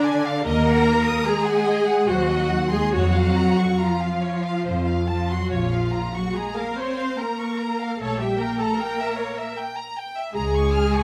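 A moderate, large-room reverb gives this string-orchestra recording a spacious, melancholic sheen, and it plays as an 11.0-second piece of a longer slow romantic movement. In a rubato 3/4 at around 68-78 BPM in Bb minor, a clear, intense first violin section carries the elegiac melody with vibrato, spanning C5 to F6. Behind it, a warm second violin section sits distant and in the background, its expressive line colored by portamento. Up front, the violas supply smooth, even accompaniment, while a lush cello section and focused double basses, which enter at 0.5 s, hold down a rich bass. The harmony moves through Ebm, Cdim/Eb, and Bbm/F before settling on Bbm, then darkens with a diminished chord and closes on Bbm/Db.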